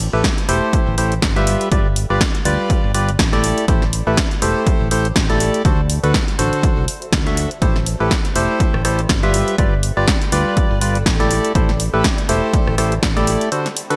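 A fingered electric bass with sidechain pumping, a punchy analog drum machine of hi-hat, rim click and gated-reverb snare, and a very quiet, cloudy granular pad open this energetic, bittersweet piano house excerpt at 122 BPM in A minor, swung on the 16ths, with a hollow, percussive organ stab arriving at 0.1 seconds through chorus, delay and pumping, and an electronic kick joining at 0.2 seconds. The bass sits warm and direct beneath the up-front stab as the harmony cycles through Am7, G7 and D7, while the detuned pad stays blurred and mellow in the background. The bright 1980s-style digital production carries light reverb, the bass drops out at 13.4 seconds, and a short break closes the final half second.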